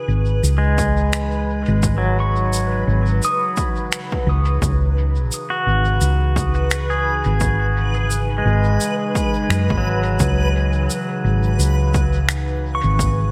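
Deep and meditative, this ambient dub excerpt at 86 BPM in C# minor rests on a single C#m9 chord with a swung 16th-note feel: a warbly, nostalgic tape-like pad fades in behind a clean, fingerpicked pedal steel guitar playing arpeggios through tape echo, a reversed, granular swelling texture holds B4, a dark, round hollow-body electric bass sits up front from 0.1 s, dry shaker and finger snaps carry dub echo, and a punchy, overdriven electronic kick arrives at 0.8 s, the whole mix set in a small, lightly reverberant room.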